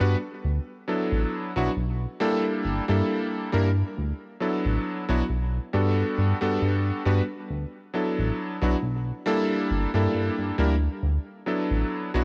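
Vaporwave in D major at a slow 68 BPM in 4/4, with a light swing on the sixteenths, this short excerpt cut from a longer piece feels nostalgic and faded. A clear electric grand piano carries the accompaniment throughout, its vintage, direct tone with a clangy low end sitting up front and colored by subtle chorus and analog delay. Beneath it, a chorused synth bass plays for the full 12.2 seconds, a glossy, nasal pulse-wave and sawtooth sound with pulse-width modulation, a fast attack and a mellow, sustained body that also sits up front. The harmony drifts between D6/9 and G minor 6, with a single turn to Gmaj7 at 5.7 seconds before settling back on D6/9. Light reverb and a digital ambience surround the parts, while a cassette-tape character rolls off the top end, giving the whole recording a dulled, retro haze.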